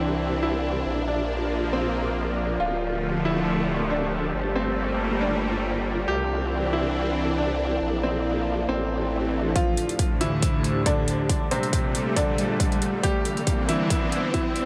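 A dreamy, reverb-soaked mix opens this heavy, aggressive wobble dubstep excerpt in D minor at 138 BPM with a swung half-time feel. A clear, worn grand piano carries the melody through delay over a lush, bright supersaw pad with phaser and sidechain pumping, while a detuned formant-sweep wobble bass with chorus and overdrive sits up front until 9.5 s and a mellow, ethereal airy pad hovers in the background. At 9.6 s the build-up begins with punchy overdriven electronic kick and metallic hi-hats, and a background riser joins at 11.5 s, over chords moving through Cadd9, Bb, Dm and Gmadd9.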